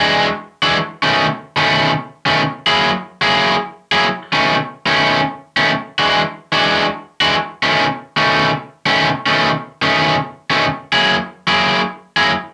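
A bright, overdriven electric guitar from a cranked stack, picked and up front, takes the solo from the first moment in this gritty, laid-back blues fragment at 146 BPM, swinging in 4/4 in B mixolydian over ninth chords on E, B and F#, with light reverb around it, tuning a touch sharp at A4 = 441 Hz, and playing until 12.3 seconds.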